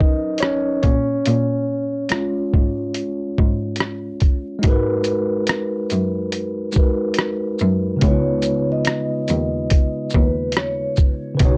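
A thumpy, muffled sampler drum kit with vintage 12-bit grit sits up front in this reflective, nostalgic lo-fi hip hop fragment, its hi-hat, kick, rim click and shaker swinging beneath a low-pass-filtered tine electric piano and a clear, focused bowed cello bass with vibrato, each running from 0.0 to 11.6 seconds. At 8.0 seconds a mellow, metallic vibraphone played with soft mallets enters with a short melody through analog delay, ringing until 10.9 seconds. The recording is dry and gritty, coloured by cassette tape and transformer saturation.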